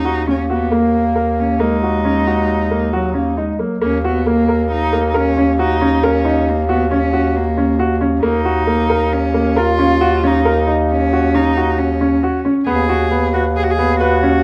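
A cello with light vibrato and a soft, bowed sul tasto tone carries the melody from the start, over clear, open baby grand piano arpeggios with long sustain and a mellow, roomy bass clarinet holding Eb2, while a classical-style clarinet adds a brief second line until 3.8 seconds in this restless, hypnotic contemporary chamber piece in Eb minor at 136 BPM in 5/4, cut from a longer work and captured with close, detailed microphones and light reverb, moving from Ebm to Ebm7 and settling on B5/Eb at 12.7 seconds.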